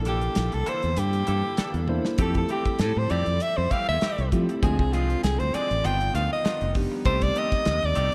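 An intense, slick stretch of electric jazz fusion at 99 BPM with a light sixteenth-note swing opens on a worn, slightly out-of-tune tine electric piano, a growly, up-front fingered bass and a very quiet, crystalline pad holding icy sustained chords. A clear soprano saxophone takes the melody almost at once with vibrato and scooped notes over a dry, damped 70s drum kit with a tight kick and a fill from 1.9 to 2.2 seconds, while a clean, compressed semi-hollow guitar adds stabs through analog chorus in the background. The harmony moves from C13 through Fmaj9, Dm7b5 and G7b13 to Cm69 under light reverb, in a passage cut from a longer piece.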